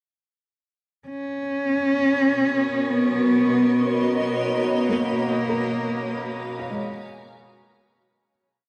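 A dark, intimate cello carries the melody from 1.1 seconds, played sul tasto with light vibrato, a soft attack and a smooth top, tracing arch-shaped motif phrases close and up front through a diffuse ambient delay. This brief ambient piece in B lydian floats in free time with a peaceful, luminous mood, moving from Bmaj7 to F#maj7 at 4.7 seconds before fading out. Alongside the cello, a granular cloud pad holds bright, blurred, detuned sine chords that shift slowly, full-bodied and prominent with its own reverb. A tense, string-like sawtooth drone with vibrato and a noise layer fades in, sitting in the background. From 4.9 seconds a felt-muted upright piano adds mellow arpeggios with audible action noise and short sustain, its three slow loops of unequal length drifting against each other. A wet shimmer reverb with a long tail lends the piece a suspended, hazy glow.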